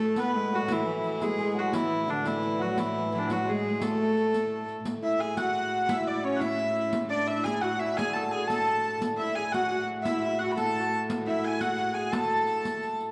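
A rustic, ancient-sounding medieval dance in 6/8 at 116 BPM opens with all five parts at once: a nasal, earthy hurdy-gurdy carries the melody up front, while a shimmering hammered dulcimer and a biting, reedy viola da gamba play a second line alongside it. A second viola da gamba, soft in attack and intimate, holds a drone on A2, and a riq with bright jingles and hard hands sits in the background. The dark production places the players in a wet recital hall, and the tune moves into a new section at 4.9 s in this passage cut from a longer piece.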